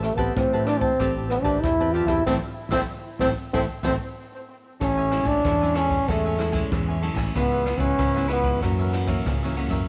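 A straight 4/4 samba-and-choro groove drives this lively, bittersweet excerpt: a breathy, whispered trombone with light vibrato and tape echo carries the melody up front, over crisp picked cavaquinho and full-bodied fingerpicked nylon-string guitar with audible finger squeak in the background, a growly overdriven fingered electric bass, and a distant, roomy brush kit with dark cymbals and a boomy kick, as the band hits accents together from 2.3 to 4.8 seconds before a new section opens at 4.8 seconds, the whole mix sitting in light studio reverb.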